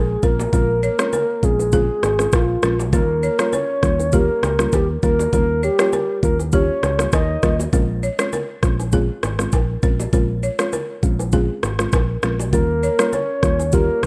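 A mellow, sultry afrobeats excerpt at 100 BPM in Bb dorian opens with a round, octave-layered synth lead carrying the melody with chorus, delay and vibrato, over a woody, buzzing balafon riff and an amped fingered electric bass; the lead drops out at 7.6 seconds and returns at 12.5. A soft, dark pluck with chorus fills in the accompaniment, while an up-front electronic afro-pop kit with a knocking kick, rim click and shaker drives a lightly swung groove alongside bright, saturated bongos and congas. The harmony moves between Bbm7 and Eb7 in a dry, rough home-demo mix.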